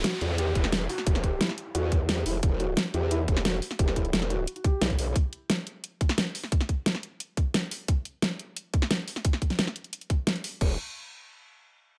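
Dark and tense, this excerpt from a dark technical drum and bass track opens with a soft, felt-muted upright piano playing mellow arpeggios, its action noise audible and its sound pumping under a digital delay, while a downlifter sits in the background for the first 2.4 seconds. A growling, wobbling bass with chorus and tube saturation sits up front alongside a dubstep drum kit with a huge snare and bright hats, joined at 0.6 seconds by a tight electronic kick re-recorded in a small room. The piano drops out at 4.9 seconds and the bass shortly after, leaving the drums to drive on before the bass returns briefly at 10.6 seconds as everything breaks off.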